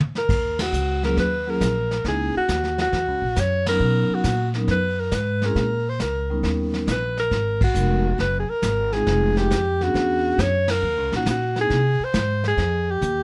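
Swung 4/4 brushwork from a dark, rolled-off vintage kit with a punchy kick sets a late-night, moody small-group jazz groove, cut from a longer piece, with the whole band hitting accents throughout and a drum fill at 13.0 seconds. Up front, an alto saxophone carries the melody with a warm, vibrato-laced solo voice, while a woody, thumpy pizzicato upright bass on gut strings holds the low end. From 1.0 to 11.7 seconds, a metallic, ringing vibraphone with medium mallets and the motor off adds smooth accompaniment over rich extended harmonies, all captured dry.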